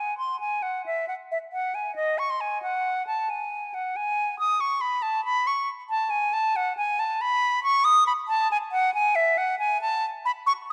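A silver concert flute carries this short, solemn passage entirely on its own, its tone pure and metallic with a gentle vibrato and softly shaded attacks. Cast in the manner of a baroque-style fantasia, the line flows freely in 12/8 at around 91 beats per minute, the rubato letting each phrase breathe rather than follow a strict pulse. The flute moves between D#5 and D#6 and sits close and present in the listener's ear. A moderate concert hall reverberation surrounds it, with a decay of about 2.3 seconds that lends the unaccompanied melody a spacious, resonant halo. Lasting roughly 10.7 seconds, the passage is a fragment taken from a longer classical piece, leaving a solemn, flowing impression.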